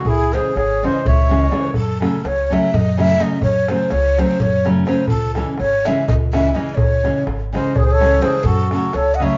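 Fiery and virtuosic, this short excerpt from a Balkan wedding band tune drives along in a straight 7/8. A breathy, end-blown ney carries the melody up front, tongued and expressive with vibrato. A mellow, reedy accordion adds a close-miked, dry second line that drops out at 1.7 seconds and returns at 7.6 seconds. A dark, full-bodied nylon-string guitar is fingerpicked as accompaniment close to the listener, over a woody pizzicato upright bass and a soft-handed darbuka with a clay shell and natural skin. The harmony moves between C#m and F#m as the band plays live together in one room, with moderate large studio reverb and nothing above 7.5 kHz.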